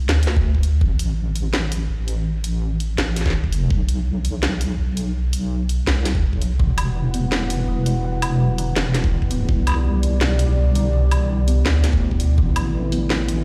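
A deep, detuned wobble bass with chorus and tube saturation opens this heavy, cinematic half-time drum and bass excerpt in E minor at 166 BPM, soon joined by a layered kit of cracking snare, bright hi-hats and woodblock with a knocking electronic kick, before a moody sawtooth pad with sidechain pumping and a woody, ringing kalimba arpeggio with tape echo enter at 6.6 seconds over E5, Cadd9 and A5 chords, all heard as if played through a big sound system in a bare stone room.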